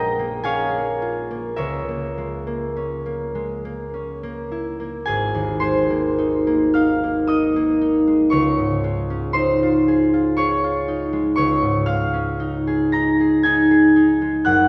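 Pastoral and dreamy, this slow classical passage drifts in 3/4 at 51-60 BPM with a free, rubato feel, tuned to A4 = 443 Hz and cut from a longer piece. A single concert harp, acoustic, fingerpicked and ringing, sits up front as accompaniment across a broad span from Gb1 to Bb6, moving from Bbm7 and Dbm6 into Abadd9 and Dbadd9 colours when a new section arrives at 5.1 seconds. A wet concert hall reverb with a 2.5-second tail surrounds the harp, letting each plucked tone bloom into the space.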